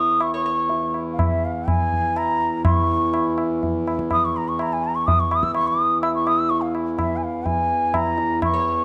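Devotional and serene, this short excerpt of Hindustani classical music in raga Marwa moves in 3/4 at around 124 BPM, gradually speeding up across its 8.8 seconds. An airy bamboo bansuri carries the melody up front between E5 and E6, its tongued notes shaded with vibrato. Beneath it, a hand-pumped harmonium holds a reedy, nasal drone from E2 to E3 with a breathing quality, while a high-tuned tabla enters at 0.2 seconds, ringing and close. A woody, picked mandolin with doubled strings adds a quiet second line on C#5, heard only briefly at the opening and again near the close. The recital-hall reverb gives the dark, warm production a moderate sense of space.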